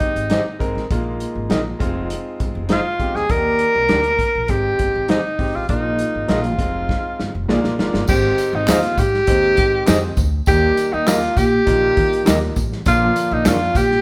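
Warm and uplifting, this short cut from a longer uptempo soul number in a 1960s style moves at 100 BPM in a straight 4/4, with the band heard playing live together in one large studio with moderate reverb. A breathy tenor saxophone sits up front carrying the melody, its jazz-style phrasing marked by vibrato, scooped notes and a smooth top. Beneath it, a clear concert grand piano adds intimate accompaniment with audible action noise, while a woody pizzicato upright bass and a soul drum kit with dark cymbals, a medium-tuned snare and a punchy kick hold the groove. A dark, clean electric guitar enters at 0.3 s with fingered stabs over seventh-chord changes such as Abmaj7, Bb7sus4 and Fm7. After a drum fill, the harmony opens at 8.1 s into plain Ab, Eb and Bb chords, and a tube shaker with group handclaps joins in for the closing stretch.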